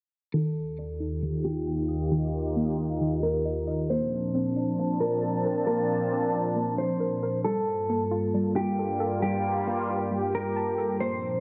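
A resonant, detuned sawtooth pad sits up front with slow-attack sustained chords through chorus and a low-pass filter, while a filter sweep runs across this dreamy, blissful hip hop excerpt from 0.3 to 11.4 seconds at 135 BPM in a half-time 4/4 feel. A clean, dark, fingered electric guitar carries the melody with lush chorus and tape echo, and a soft, round, wave-folded pluck spins decaying arpeggios through its own chorus, low-pass filter and tape echo. The harmony moves from Ebmaj7 to Bbmaj9 to Gm9, all of it bathed in a moderate, lush hall reverb.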